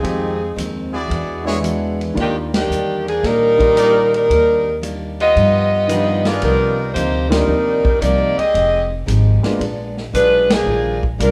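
A moderate large-studio reverb surrounds this joyful, brassy big band swing fragment at 113 BPM, moving from Eb major to C minor at 6.4 seconds, as an up-front saxophone section with light vibrato carries the melody over a clear concert grand piano, a full-bodied picked steel-string acoustic guitar with finger squeak sitting in the background, a growly pizzicato upright bass and a vintage drum kit with a tight kick and rolled-off top, while a close-miked trumpet section adds bright stabs from 0.9 to 6.9 seconds and the band hits accents together.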